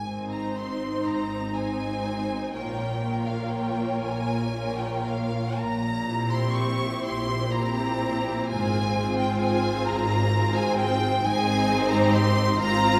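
A slow, solemn romantic movement for string orchestra in 6/8 with rubato opens with an up-front violin section singing a vibrato-rich melody above an expressive second violin line, while focused cellos and a smooth, distant double bass section carry the bass, and a clear viola section enters as accompaniment at 0.1 s. The elegiac harmony passes from Ab through Bbm, C7/Bb and Fm/Ab before returning to Ab at 11.2 s. Heard from further back in a wet scoring-stage reverb, this lush bowed ensemble is a fragment cut from a longer piece.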